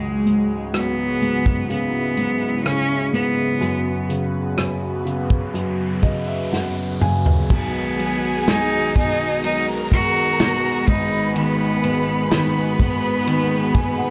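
A bright, bowed solo cello carries the melody over a polished grand piano and a smooth, detuned analog pad with chorus, opening this tender, hopeful pop ballad excerpt in a slow 4/4 with a dark, warm production and light small-room reverb. An acoustic drum kit with a tight kick and medium-tuned snare sits up front, while an electronic riser builds from 4.4 s toward piano and drum fills that lead into the second section at 7.5 s. There a lush symphonic violin section adds a vibrato-rich second line above the cello, and the piano closes with another fill.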